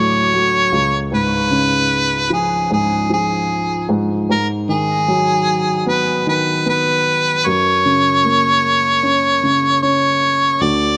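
A light reverb sits on this short pop passage, with both instruments up front and a vintage character. At a slow, straight 76 BPM in 4/4 and set in F# major, the mood is tender and emotional. A punchy harmonica carries the melody from 0.0 to 11.0 seconds, playing in a solo pop style between G#4 and D5 with vibrato and scooped notes. Beneath it, a dark, woody upright piano provides mellow, smooth accompaniment across the same span, reaching from C#2 to C#4. The harmony moves through D, C#7 and G#m7 before settling on F# at 7.4 seconds, in a brief cut from a longer piece.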